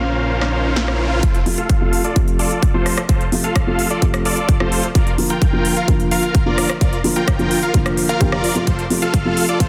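A dense, heavily limited modern master with light reverb carries this euphoric, triumphant festival progressive house build-up, cut from a longer piece. A huge, detuned supersaw riff with a low-pass filter sweep and a dark, boxy concert grand piano both pump to the sidechain through tape echo, while a thick, chorused, saturated saw bass and a background riser open the passage before a punchy, tape-warm electronic kick arrives up front at 1.2 seconds. A layered big-room kit of crisp hats, rim click and a soft-clipped snare, re-recorded in a large room, drives toward a drum fill and a second riser at 8.7 seconds.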